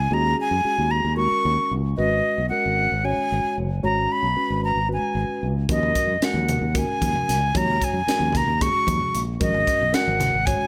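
Nocturnal and driving, this electric jazz fusion excerpt moves in an odd 7/8 metre with a straight feel. A breathy, bright concert flute carries the melody up front, its straight, tongued tone slightly unsteady and set in plate reverb. Underneath, a fingered electric bass with a warm, amped sound holds the low end while a mellow tine electric piano, clean and treated with analog chorus, fills in the harmony over minor seventh and suspended chords. At 5.7 seconds a crisp fusion drum kit enters with a high-tuned snare, punchy kick and hi-hat in a small, pumping room, joined by hard-handed congas with a thin-skinned, vintage, band-limited character sitting in the background. The whole group shares a moderate club ambience.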